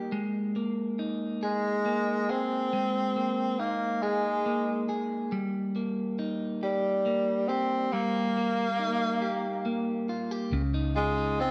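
A slow, swaying six-eight pulse at 46 BPM carries this tender pop ballad fragment in Ab major, opening at 0.0 s with a slightly broken-up, compressed electric guitar, picked up front and bathed in spring reverb, moving from Absus2 through Eb/G. At 1.4 s a soft-attacked tenor saxophone takes the solo melody with jazz-style vibrato, its tone warm yet distant and roomy. The dark, foam-muted fingered bass arrives only at 10.5 s, round and punchy on the Dbadd9, while a wet echo-chamber reverb and small-room ambience surround the whole.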